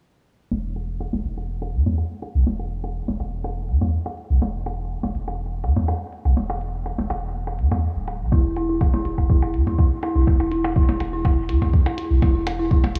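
Minimal techno at 123 BPM with a quirky, sparse mood, opening at 0.5 seconds on a deep, punchy sine sub bass with a pitch-drop attack and sidechain pumping, a filter sweep running across it, together with percussion blips through analog delay, soon joined by clicky electronic hi-hats with a tape-warm character. At 8.3 seconds a soft, up-front electronic kick drum arrives alongside an eerie, warbling FM synth bell riff on E4, its inharmonic, detuned tone colored by chorus and trailing into a diffuse ambient delay with sidechain pumping. The mix sits in light digital reverb and small room ambience under a low-pass filter, cut from a longer piece.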